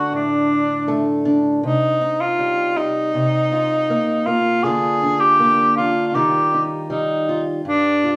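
A tenor saxophone with light vibrato and a soft attack sings a melancholic, wistful classical-style melody at 80 BPM in 4/4 over a warm fingerpicked acoustic archtop guitar, the two up front yet bathed in a large, wet studio reverb as they play live in one room through chords moving from D5 and Cm toward Ebadd9 and a G7 with its third omitted in this 8.2-second acoustic folk fragment cut from a longer piece.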